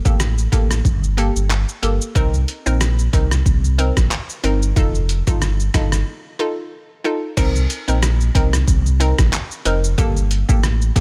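A tough, bouncy dancehall groove opens at once, with a sampler-style drum kit, a deep sub bass and a hollow square-wave pluck all entering together. The drums sit up front, compressed, pitched down and muffled, with an overdriven edge; a thumpy kick, handclaps, hi-hat, rim click, shaker and crash cymbal ride a light sixteenth-note swing. Beneath them, the sine-based sub bass with an added octave is full and sustained, with a fast attack that keeps the low end firm. The pluck carries the accompaniment in a bright, detuned tone built from square and sawtooth waves, with a noise layer and ring modulation, and its decaying notes are coloured by chorus and phaser. The harmony moves from Gmadd9 through Cm7 to F7, a break arrives at 6.1 seconds, and a new section begins at 7.4 seconds, returning to Cm7 and then Gmadd9 inside a digital ambience before this cut from a longer piece ends at 11.0 seconds.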